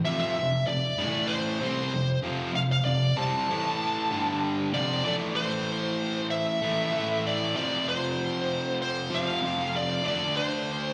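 This is a live gig heard through the venue's PA, with the light reverb of a recital hall around it. The short cut from a longer rock piece sits at 96 BPM in a straight 4/4, in A minor with tuning a touch above standard at A4 = 441 Hz, and its mood is heavy and aggressive. An overdriven electric guitar drives the riff from the start, dark and double-tracked, picked up front in its low-to-middle register with a slapback echo. From 0.1 s a smooth overdriven lead guitar carries the melody high above it, picked and up front with a warm tone, treated with both slapback echo and digital delay. The harmony moves through power chords on F, A and G before settling on A minor at 5.1 s, where the second half begins and moves on to F and D power chords through to the close at 10.9 s.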